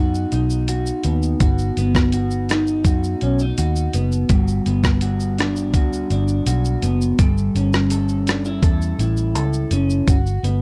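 A straight 4/4 groove sets a laid-back, nostalgic tone in this short indie and bedroom pop fragment, with a gritty, compressed sampler-style kit entering at 0.1 s on hi-hat, thumpy kick, rim click and shaker. A dark, round, foam-muted fingered bass sits up front, while an electric guitar through a small old amp, slightly broken-up and picked, adds subtle chorus and vibrato as the harmony moves from B to Gmaj7, A7/G and B5. The dry, close 1970s-style studio sound keeps every part intimate and near.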